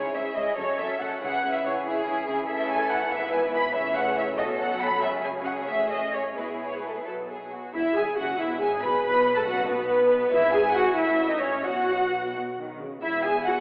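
Moving in a rubato 6/8, this spirited, cheerful classical-period movement for string orchestra is cut from a longer piece and turns to a contrasting second section at 7.7 seconds. Muted violins carry the lush melody up front, while a second violin section and violas, veiled and con sordino, add an inner line and accompaniment; cellos with a smooth top and double basses in the background enter at 0.2 seconds to hold the bass. The strings sit in a reverberant scoring stage, yet the whole recording comes through worn, warbling cassette tape with a telephone-like quality.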